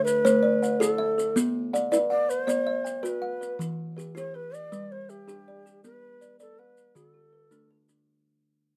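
Southern African traditional music in a hypnotic, rippling mbira-style interlocking cycle, where two plucked kalimbas weave arpeggios, one mellow and up front with a solid-board fingertip pluck and the other with a hollow-box thumbnail pluck, alongside a breathy, reedy low wooden flute carrying the melody with vibrato and soft attacks, while close, grainy maracas patter quietly underneath in light reverb through a fade that runs the full length of this brief 8-second cut.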